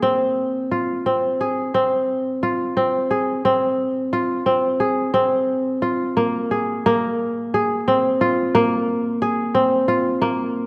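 A crisp, ringing fingerpicked kora plays alone and up front through this urgent yet pensive contemporary instrumental fragment in 5/8, moving from F minor to a B-flat suspended chord at 6.9 seconds, all set in a dark production with a moderate concert-hall reverb.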